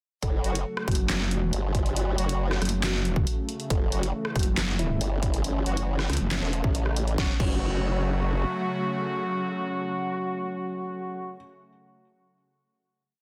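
A dense, heavily limited modern master with light reverb carries this menacing, chaotic piece of heavy wobble dubstep at 138 BPM in a half-time 4/4 feel, centred on F# phrygian. A punchy electronic kick and a dubstep kit with a deep snare, claps, rim, closed hats and crash pound beneath two up-front basses: a detuned formant-sweep wobble bass with chorus and overdrive, and an aggressive, metallic FM wobble bass answering it, both shifting their wobble speed. Dark brass sounds sparse, echoing power-chord stabs over a lush supersaw pad with phaser and sidechain pumping, while a felt-muted upright piano with audible action noise repeats a soft riff through tape echo in the background until the drop gives way to a final chord at 7.2 seconds.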